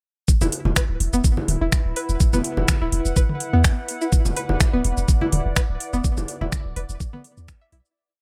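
A knocking, tape-warm four-on-the-floor kick drives this quirky, hypnotic minimal techno piece at 125 BPM in 4/4 with a light swing, joined by programmed metallic hats, finger snaps, shaker and a backbeat, plus overdriven electronic congas and toms clicking and blipping in cross rhythm with delay. A punchy sine sub bass with a pitch-drop attack rolls in a staccato groove under a twangy, string-like resonator pluck running a 10-step loop that drifts against the bar through chorus and delay, while a warbling, lo-fi pad shifts slowly through mellow chords, its detuned sawtooth and triangle tones pumping with the sidechain. From 4.5 seconds a faint bubbling texture holds a high D5 under random filter steps, and the whole drop fades out from 5.4 seconds to its end at 8.0 seconds.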